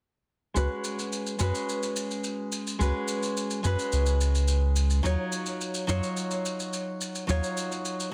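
A deep, round sine sub bass sits up front in this relaxed, wistful sunset chillout excerpt, its sustained, fast-attack notes moving through a filter sweep from 0.6 seconds until it stops at 7.4 seconds. A full-bodied, fingerpicked nylon-string guitar with a classical character comes in first at 0.5 seconds, also close and present, with its tone softened by a low-pass filter and trailed by tape echo. A distant, roomy shaker with a brushy acoustic texture sits far back in the mix. At a straight 107 BPM in 4/4, the harmony rests on Db7sus4 before shifting to Ebm9 at 5.0 seconds. Light reverb and small room ambience surround the parts, while the dense, heavily limited modern master keeps the short passage compact and polished.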